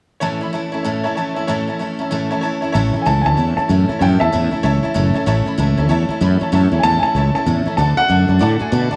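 This upbeat, retro rockabilly excerpt opens at 0.2 seconds with a jangly, detuned honky-tonk upright piano accompanying in a high register beside a picked steel-string acoustic guitar, whose fresh strings give a full-bodied dreadnought sound up front. The swung 4/4 groove has a lively bounce. At 2.7 seconds a fretless electric bass joins, direct and amped, sitting prominently in the mix with a bright edge. Just after, at 3.0 seconds, a second upright piano takes the melody with a polished, woody tone in its upper register, standing clearly over the vintage clatter of the accompanying piano. The harmony moves from A to D near the end, and light reverb gives the whole a small-room feel.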